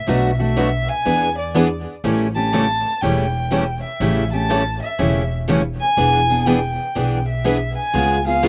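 A dark, woody bowed violin with vibrato carries the second line from the start, set against two bright picked steel-string acoustic guitars, one full-bodied and jumbo, the other boxy and parlour-sized, both with audible finger squeak and a slapback echo shared with the violin, while a thumpy pizzicato upright bass on gut strings anchors this lively, charming jazz manouche swing at 122 BPM in E mixolydian, moving through Bm7, E7, A7 and C#7 in a dry outdoor sound across its 8.5 seconds.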